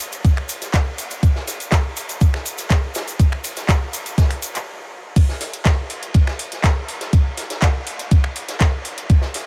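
A straight 4/4 house groove at 122 BPM, raw and hypnotic, rides on a thumpy, up-front sampler-style kick, a booming tape-warm analog drum machine with metallic hi-hats, finger snaps, handclaps and crash cymbal, a distant, roomy indie kit with dark ride cymbal and medium-tuned snare, and a grainy, bright tube shaker in the background until 4.6 seconds, before a brief stop gives way to the drop at 5.2 seconds in this small-room, lightly reverberant cut from a longer piece.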